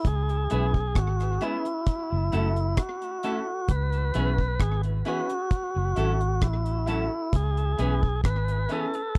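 Roots reggae at a meditative, laid-back 66 BPM in C# minor, this short cut from a longer piece moves between C#m7 and F#m7 with a dry, close 1970s-style studio sound. A dark, round, foam-muted fingered electric bass and a deep acoustic drum kit with a tight kick, hi-hat and rim click sit up front, along with a full, lightly overdriven tonewheel organ melody carrying vibrato, key click and tape echo. Around them, a twangy, picked clean electric guitar with its own tape echo adds accompaniment, and an upright piano contributes brilliant, woody stabs with short sustain.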